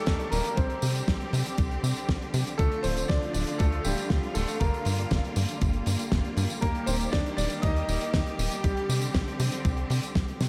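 A tight, punchy sequencer bass with tube saturation drives this nostalgic, bittersweet italo disco fragment alongside a thumpy electronic kick and a damped 70s kit of fat snare, hi-hat and tambourine, while bright, vibrato-rich strings hold sustained chords under an intimate baby grand piano melody with delay and long sustain, all set in a dreamy, lush hall reverb over chords moving from Eb through Csus2, Dm and Gm7.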